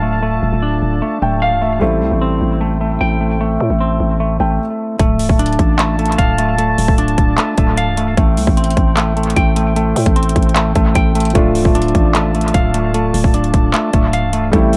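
An echo-heavy mix with light reverb gives this brooding, dark trap excerpt a cavernous, shadowy sound from its first moment, cut from a longer piece in a half-time feel. A clean, compressed semi-hollow electric guitar sits up front playing fingered arpeggios drenched in dub echo, while a brass ensemble holds smooth, classical-style chords with light vibrato alongside. A growling, buzzy 808-style bass with a fast attack and decaying tail drives the low end throughout. A mellow, intimate concert grand piano with audible action noise and a vintage tone adds accompaniment and short fills, and the music breaks for a brief stop just before 5.0 seconds. At that point a trap drum kit arrives with a hard-clipped kick, metallic hi-hats and handclaps, its parts also fed through dub echo. The piano drops out and then returns at 11.3 seconds over the slow alternation between D minor and A minor seventh harmony.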